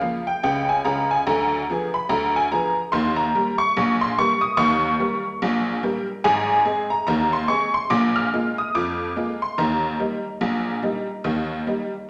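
Ragtime piano in a playful, lively mood, this 12-second cut from a longer piece moves at 72 BPM in 2/4 with a 16th-note swing. A solo tack piano carries everything from Ab1 up to F6, its jangly, metallic tone sitting up front within a wet, large studio reverb. The harmony opens on Bb minor and passes through Ddim7 and Eb7 to Ab, then Bb5, before landing on Eb.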